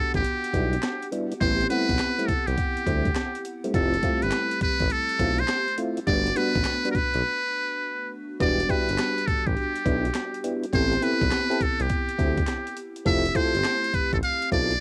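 New jack swing R&B with a slick, punchy swung feel, cut from a longer piece, where a buzzy, thin trumpet with a metal mute carries the melody up front over a lush, dreamy FM electric piano with a soft pad layer, chorus and cassette tape color. A smooth sawtooth-and-triangle synth bass and a gritty, compressed breakbeat sampler-style kit with thumpy kick, snare, hi-hat and handclaps drive the groove, while a soft, flute-like percussive tonewheel organ adds stabs through chorus vibrato and a slow rotary speaker. The Em7, Am7, Fmaj7, Gmaj7 progression runs through the section, with a break from 7.2 to 8.4 seconds, all set in light reverb with the hazy character of a home cassette recording.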